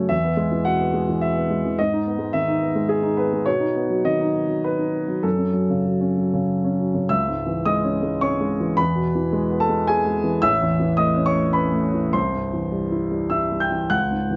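Neoclassical minimalist piano in a rubato 3/4, melancholic and intimate, heard as a 14.4-second cut from a longer piece. A solo concert grand sits up front with a deep bass and long sustain, ranging from A1 to G6 under light reverb, its top end soft and rounded. The harmony moves through E, G#m, B and F#m before a second section at 7.1 seconds turns from C#m through E and A to a closing C.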